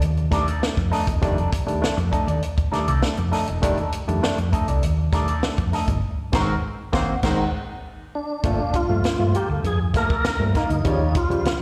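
Funk with a gritty, playful mood, heard live through a venue's PA in a recital-hall reverb, where a round, hollow-body fingered bass and a dry cocktail kit with a high-tuned snare sit up front beneath a twangy clean guitar with wah and slapback echo and barky tine electric piano stabs, while a punchy horn section adds a brief background line at 6.3 seconds during a band accent and a lightly overdriven tonewheel organ with key click and slow rotary speaker takes the melody from 8.2 seconds in this cut from a longer piece.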